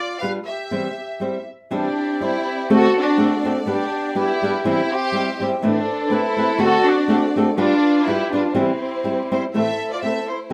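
A wet small-room reverb wraps this passionate, dramatic mariachi passage in C major, cut from a longer piece and moving at 123 BPM in a swung 2/4. A smooth, up-front violin section with light vibrato carries the melody while a mellow, distant trumpet in classical style plays a second line, and a fingerpicked flamenco guitar with fresh strings gives up-front acoustic accompaniment. From 1.7 seconds a rich, expressive second violin section adds sustained chords in the background beneath harmonies that move through G7, C, D7 and A minor.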